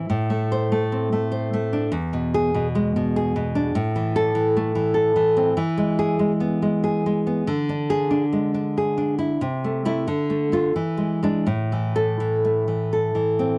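A dry, close studio sound with a 1970s character and light reverb frames this short passage cut from a longer romantic work for solo classical guitar. The bright, up-front nylon-string guitar is fingerpicked in a flowing rubato triple metre, its melancholic, passionate line ranging from E2 to C5. Harmonies move between E and A chords before a closing turn through Am/C, Dm and E7 that settles on A5 at 11.5 seconds.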